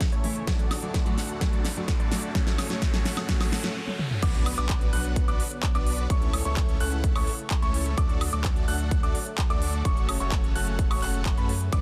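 Anthemic and uplifting, this festival progressive house clip at 128 BPM opens on a build-up in which a thick, detuned supersaw riff moves through a filter sweep with dub echo, while a fingerpicked steel-string acoustic guitar sits in the background, a background riser rises, and a big-room drum kit with crisp hats and a huge snare plays fills over a punchy, up-front electronic kick. After a brief stop, the drop hits at 4.2 seconds with an impact as a dark, mellow grand piano arpeggiates high notes and a saturated sub bass rumbles underneath, both pumping to the sidechain over a Bm, A/C#, D, F#m progression. A very quiet, lush sawtooth pad with chorus sustains chords throughout, all inside a dense, heavily limited master with light reverb.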